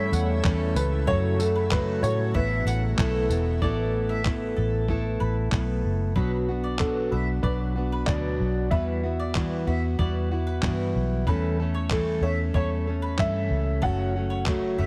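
Tender and wistful, this acoustic pop excerpt sets a worn, woody, slightly detuned upright piano melody over fingerpicked, full-bodied jumbo steel-string acoustic guitar and round, picked mandolin arpeggios. A dark, foam-muted electric bass and a gritty sampler-style soul kit with a thumpy kick, handclaps and tambourine sit up front, while a shimmering, ethereal pad with chorus and reverb hangs in the background until 3.6 seconds. The whole mix carries light reverb and a heavily compressed radio sound.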